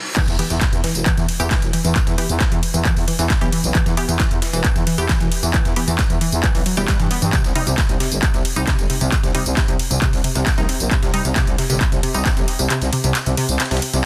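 Dark and industrial, this driving peak-time techno excerpt runs at 134 BPM in a straight 4/4, set in E harmonic minor with a faint reverse cymbal and electronic impact opening the first 2.0 seconds before the drop lands at 0.2. A heavy, layered electronic kick sits up front with a tape-warm, small-room character, joined by an overdriven analog drum machine supplying crash, ride, hi-hat, handclaps and tambourine, all pumping against the sidechain. Underneath, a very quiet, gritty sampler-style kit adds compressed hi-hat and a fat snare. A growling, thick FM bass with tube saturation pumps in the low register while an analog pluck riff, round and detuned with a noise layer, carries chorus, overdrive and dub echo, and a crisp, bright wavetable chord stab flickers very quietly above. The harmony moves from Em to C5 at 7.3 seconds, the kick drops away at 12.7 seconds, and the whole sits in light reverb under a dense, heavily limited modern master.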